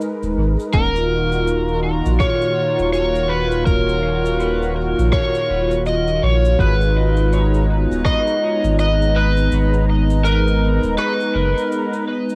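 Swung sixteenths in 4/4 drive this spacious, meditative ambient dub fragment from a longer piece, where a deep, tape-softened electronic kick and a distant cabasa and rim click trailing dub echo sit beneath a round sine sub bass, an up-front smooth, detuned sawtooth pad with chorus, a dark, overdriven slide guitar melody played with fingerpicks and carrying dub echo, and a very quiet, muted chord stab with phaser at 0.7 and 6.6 seconds, before the kick drops out at 9.5 seconds, the whole home cassette recording sitting in light reverb.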